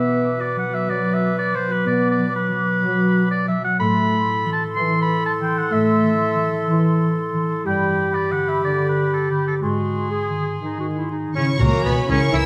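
A fingerpicked concert harp rings out in arpeggios under a warm oboe, clear clarinet and airy flute ensemble weaving second lines over mellow French horn chords in this swashbuckling, adventurous cinematic excerpt in A dorian at 124 BPM, until at 11.4 s lush bowed violins take the melody with a clear trumpet's stabs and dark, woody cellos, joined at 11.6 s by violas and double basses, all set in a moderate scoring-stage reverb.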